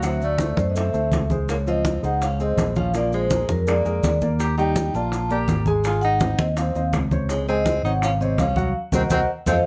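A sultry, sophisticated Afro-Cuban jazz passage at 165 BPM opens with a ringing, metallic vibraphone melody with slow motor vibrato, alongside a breathy, close-miked tenor saxophone second line with scooped notes, over short-sustained grand piano chords moving through extended jazz harmonies, a punchy, up-front amped electric bass, bright, dry congas in the background, round vintage bongos and grainy maracas, set in moderate studio reverb, until the band strikes an accent at 8.8 s.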